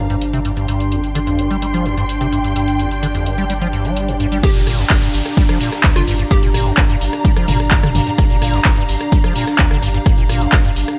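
A gritty, lightly reverberant mix with a dulled top end opens on a hypnotic acid house groove at 128 BPM in straight 4/4, centred on G minor pentatonic over a Gm7 chord. From the start a squelchy, resonant square-wave acid bass riff runs under a filter sweep, beside a round sine sub bass with tube saturation, a moody detuned sawtooth pad holding sustained chords, and a lush bowed string section with vibrato, all breathing with sidechain pumping. A tape-warm analog drum machine adds hi-hat, ride and crash cymbals, handclaps, rim clicks and toms, with its hats, cymbals, snare and toms filtered to a muffled edge. The drop arrives at 4.4 seconds, bringing an up-front punchy kick, a distant, roomy soft-mallet kit with a fat snare, a grainy cabasa in the background and a very quiet downlifter. A bright, bouncy square pluck with ring modulation, chorus and tape echo plays a brief melody until 6.8 seconds, and the cut from a longer piece ends near 11.0 seconds.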